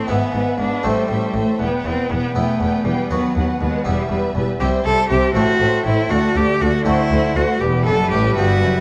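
In a 6/8 at 80 dotted-quarter beats per minute, this lively, brilliant baroque-style concerto passage, cut from a longer piece, puts a clear, focused solo cello up front singing the melody, with an intense violin section sounding high above it in the background, a distant second violin line, smooth violas and an airy, bright harpsichord filling the accompaniment, and studio cellos joining expressive, close double basses on the bass from 0.1 seconds, all moving through a minor-leaning progression that settles on E minor and heard through recital-hall reverb and worn, warbling cassette tape with drifting pitch.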